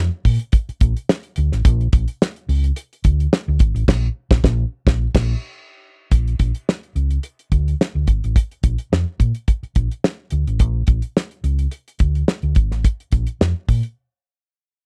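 Strutting and playful, this funk passage is cut from a longer piece and rides a straight 4/4 feel. A fingered electric bass on a hollow-body short-scale instrument opens the track, its amped tone dark, round and punchy as it sits up front in the low register. A damped 1970s acoustic kit enters almost at once, pairing a fat snare and tight kick with hi-hat and crash cymbals that sound dark. Around 3.9 seconds the band hits a shared accent before moving into a new section, and the drums carry on until 14.0 seconds, when the music drops into a brief break. The sound is dry and close, with little reverb and both parts placed prominently in a 1970s-style studio setting.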